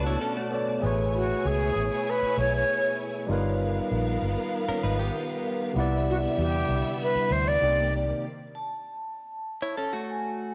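A lush soul excerpt opens with a round, punchy muted bass, a barky tine electric piano, clear bowed symphonic strings, a sawtooth string machine with ensemble chorus in the background, and brief riffs from a clean, direct-recorded electric guitar with spring reverb; a breathy, hollow jazz flute with a cassette-tape tint takes the melody at 1.2 seconds, a very quiet ringing vibraphone joins at 2.7 seconds, and the other parts drop out at 8.2 seconds, leaving guitar and vibraphone in a small, lightly reverberant room with a homespun cassette sound.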